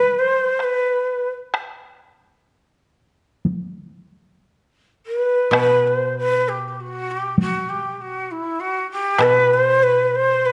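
A breathy, end-blown bamboo shakuhachi carries the still, solitary melody with vibrato and a soft, chiffy attack over a woody, fingerpicked koto accompaniment in a low register and close, heavy-stick taiko ensemble strokes from 0.6 to 9.4 seconds, in this brief rubato excerpt of Japanese chamber music at a slow 54-67 BPM, set in a moderate recital-hall reverb, with the music moving into a new section at 5.5 seconds.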